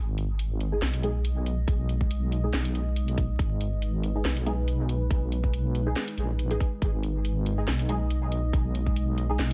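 Light reverb and a haze of vinyl crackle frame this brooding, cavernous slice of deep dubstep, cut from a longer piece and moving with a half-time, lightly swung feel. A soft wobble bass opens at the start, deep and up front, its detuned sawtooth and sine layers compressed and thickened with chorus. From 0.7 seconds a dark ambient pad spreads full-bodied sustained chords beneath, its slow attack and long release giving a moody glow, while a filtered dub chord stab adds muted, mellow plucks coloured by phaser, ensemble chorus and dub echo. A garage drum kit brings hi-hat and a cracking snare from 0.2 seconds, and a tight electronic kick sits up front from 1.7 seconds. The chords rest on G#5 throughout, keeping the mood heavy and still.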